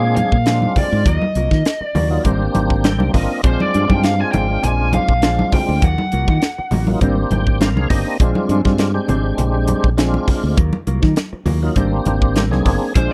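A dark, overdriven lead guitar through a small cranked amp opens this bright, funky electric jazz fusion excerpt at 101 BPM, alongside a full tonewheel organ with slow rotary speaker and chorus vibrato, a clean, compressed background guitar playing stabs, and a growly, up-front fingered bass; a crisp fusion kit with a high-tuned snare and punchy kick joins with ringing congas at 0.2 seconds, and the organ adds fills at 2.5 and 7.0 seconds, the second arriving as the lead guitar drops out, over chords cycling through Bb9, Ebmadd9 and Abmaj9#11 in a dry, close 1970s-style studio sound.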